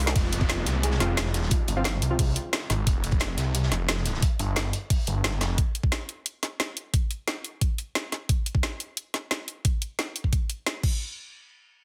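A snarling, growling distorted saw bass drives this futuristic, mechanical dark technical drum and bass excerpt at 177 BPM in F minor, with an overdriven knocking electronic kick and a drum and bass kit with a woody snare and bright hats up front, a gritty, saturated breakbeat kit in the background, soft round pluck arpeggios with subtle chorus and dub echo, a downlifter, and a bold, bright orchestra-hit-like synth stab under a filter sweep that punches in with short decays between 1.0 and 2.2 seconds in a dense, heavily limited modern master.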